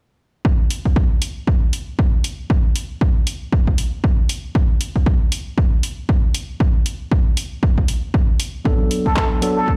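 Deep house at 117 BPM in 4/4, with a 58% swing on the sixteenths giving this short cut from a longer piece a hypnotic, warm sway. A punchy, tape-saturated electronic kick drives it from 0.4 seconds, joined by an analog drum machine's handclaps and hi-hat, both sitting up front with a dry, close sound, as if played on a big system in a bare room. Near the end, at 8.6 seconds, a clean tine electric piano heard through a combo amp arrives with stabs on a Bm7 chord, pumping with sidechain compression and trailed by delay. Just after, a plunger-muted trumpet slips in on a single A4 at 9.1 seconds, breathy and whispered with a soft attack, wah-wah colour and vibrato in an intimate jazz style. The groove stays spare and circling, built on drums alone until those two late voices appear.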